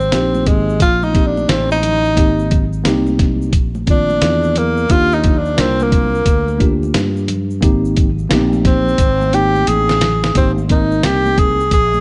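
Hip hop in a jazz-hop vein, this relaxed, cool excerpt moves at 88 BPM in a swung 4/4, resting on Abmaj9 and Ebmaj9 chords in Ab lydian. A breathy tenor saxophone with light vibrato and scooped notes solos up front until 10.4 s, over a gritty, compressed, dusty soul sampler-style drum kit with a thumpy kick and fat snare that plays a fill from 9.0 s. A growly fretless electric bass with subtle chorus, a worn, slightly out-of-tune tine electric piano, and very quiet vintage egg shaker and congas fill out the sound, which carries light reverb and a softened top end.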